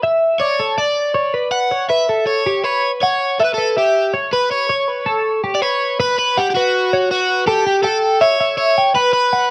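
Rock in D major at 161 BPM in a straight 4/4, this short excerpt from a longer piece feels wistful and bright. A clean, compressed twelve-string electric guitar opens at 0.0 s with picked arpeggios, carrying a subtle chorus that adds shimmer to its ringing tone. At 0.4 s an overdriven semi-hollow guitar joins with a dark, picked melody, its hollow-body voice sitting up front beside the arpeggios. The harmony moves from Dmaj7sus2 to A69 before a second section at 6.0 s shifts through B5 and A7, landing on F#sus4. A moderate studio reverb gives both guitars a sense of space while keeping them close and present.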